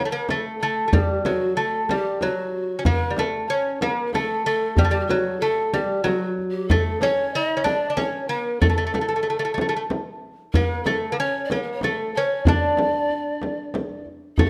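A fingerpicked lute with gut double strings sits up front alongside a breathy pan flute carrying a second line with vibrato and a soft, chiffy attack, and from 0.3 seconds a deep, hard-handed frame drum and a tight, close tombak join in. This passionate, festive Persian modal ensemble piece moves at 94 BPM in a straight 3/4, cut from a longer performance. A moderate recital hall reverb gives the dark, warm production its space.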